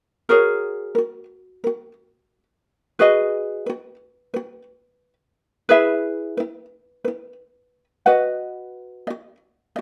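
Heartfelt and carefree, this short pop excerpt sits at an easy 89 BPM in 4/4, with a light 16th-note swing giving it a relaxed lilt in F# mixolydian. A lone acoustic ukulele carries the accompaniment from 0.3 s to 9.8 s, warm in tone, fingerpicked with a light touch and placed up front in the mix. Its range stays between E4 and F#5. The harmony moves through F#add9, G#m7, E and B, with the closing B chord arriving at 8.1 s. A moderate studio reverb adds a soft sense of space around the instrument, and the tuning sits slightly below standard at A4 = 439 Hz.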